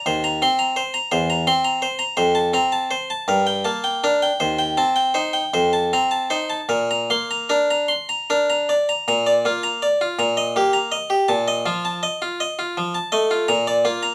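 A classical, baroque-style suite movement for solo harpsichord, this solemn, grave excerpt moves in a slow, rubato 6/8 and is cut from a longer piece. The Flemish-style harpsichord, bright and plucked on a single set of strings, sits up front and spans from Eb2 to C6, its opening phrase closing on a Bb chord before a second section begins at 9.1 seconds. A moderate large-studio reverb lends the instrument's close, present tone a sense of space.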